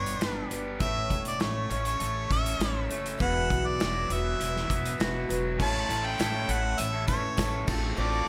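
A straight 4/4 groove from a loose indie drum kit with a tight kick and a pumping small-room sound drives this jangly, warm stretch of folk and heartland rock, with a pizzicato upright bass, a boxy picked archtop acoustic guitar with finger squeak, and a bright, overdriven, double-tracked garage guitar riff. Up front, a clear, punchy harmonica with light vibrato carries the melody, while a very quiet, lush bowed string section slips in at 0.8 seconds. At 5.6 seconds a dark, mellow upright piano with audible action noise and a jingly, dry tambourine join softly under light reverb.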